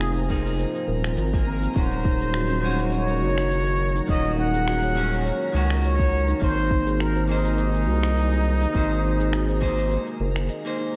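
This earthy, meditative organic downtempo excerpt in Eb dorian at 103 BPM opens with a breathy plunger-muted trumpet singing a jazz-style solo melody with wah-wah vibrato, over twangy clean electric guitar carrying sampler grit and sidechain pumping, a nostalgic warbling lo-fi pad, ringing steel tongue drum arpeggios struck with rubber mallets, and a round, dark analog bass sitting up front. An afro-pop kit of finger snaps, smooth hi-hat and shaker swings gently, a deep electronic kick joins at 0.3 seconds, and a sparkling granular texture shimmers in the background. Analog delay trails the trumpet, guitar and tongue drum, and the dreamy mix is soaked in lush hall reverb as the chords move from Fm to Ebm to Ab.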